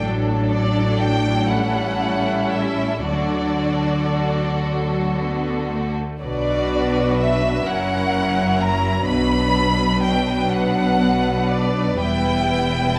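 In a 6/8 pulse shaped by generous rubato, this slow, romantic classical movement for string orchestra unfolds with a warm, serene mood. The violins carry an expressive, lush melody up front, while a second violin line sits smooth and distant beneath it, and the violas fill in an even accompaniment with a smooth top. Below them, the cellos add a bright, intense bass voice from the background, and the double basses anchor the harmony with a focused low tone. Every section plays bowed with vibrato throughout the 13-second excerpt, which is cut from a longer piece. A moderate scoring-stage reverb gives the ensemble a sense of space, and the music moves from its opening major-key phrase into a minor-key passage at 6.2 s.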